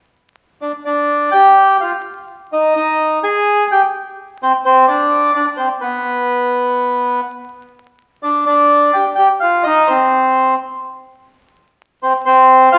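Passionate and dramatic, this tango fragment features a solo bandoneon, reedy, dark and smooth, sitting up front and playing with a free rubato from 0.6 s to 12.8 s, bathed in the lush reverb of a large studio and heard through the crackle of a very old 78 rpm record.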